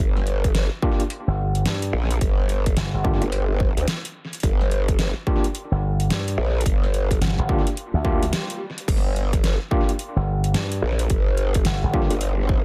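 A growling, wobbling bass anchors this gritty, swaggering glitch hop excerpt, its saturated, formant-filtered tone sitting up front with chorus and tube saturation from the start. The groove moves at 108 BPM in 4/4 with swing on the 16ths over a G minor chord, driven by a punchy, overdriven electronic kick and a dubstep kit of deep snare, metallic hats and crash cymbal, both re-recorded in a small room, with the kit also sent through overdrive and analog delay. A barky electric piano plays stabs through a combo amp, colored by medium tremolo, 12-bit sampler grit, sidechain pumping and analog delay. A bright, amped slap bass with an envelope filter joins at 1.3 seconds, adding a second punchy low line. A short electronic swell sounds in the background at 8.2 seconds during a brief break, and the mix stays dry on reverb but heavy on echo.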